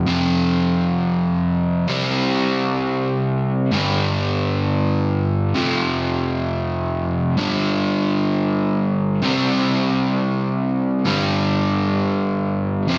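A lush, wet hall reverb gives this rock fragment a big arena sound, cut from a longer piece. A lone overdriven semi-hollow electric guitar, double-tracked, picked and up front with a slapback echo, carries the anthemic, powerful mood through the full 13.0 seconds, moving over power chords on F, C and G. A second section begins at 9.2 seconds, shifting from C to G.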